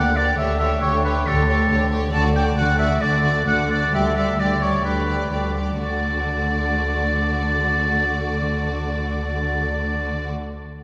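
A spirited, cheerful classical-period orchestral movement in D major opens with the whole ensemble at once: a focused, vibrato-rich violin section carries the melody, while a clear, distant-sounding solo oboe and a second, lush and even violin section share a second line over an expressive viola accompaniment. Below them, up-front, intense double basses and warm cellos with soft attacks and portamento supply the bass. The pulse moves at 119-139 BPM in 4/4 with rubato and slows from 1.3 to 5.8 seconds as the harmony passes from A7/D to G/D before settling on D at 5.8 seconds, all bathed in a wet church reverb in this passage cut from a longer piece.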